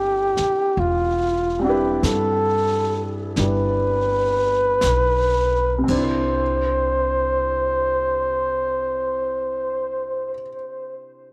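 A gently swung 4/4 pulse, its eighth notes lilting, eases and slows through the opening seconds of this late-night, romantic jazz ballad, a short fragment lifted from a longer piece. A breathy, dark flugelhorn carries the solo melody up front, its light vibrato and smooth top softened further by a tape echo. Beneath it, an intimate upright piano with audible action noise and a slightly detuned, natural character supplies the accompaniment, while a woody, thumpy pizzicato upright bass anchors the low end. A polished brush kit, with dark cymbals, a high-tuned snare and a boomy kick, enters at 0.4 seconds and falls away at 6.1 seconds, shortly after the harmony shifts from Cmaj9 to Cadd9 at 5.6 seconds. After 10.4 seconds the piano rings on alone, all of it set in light reverb and soft studio ambience.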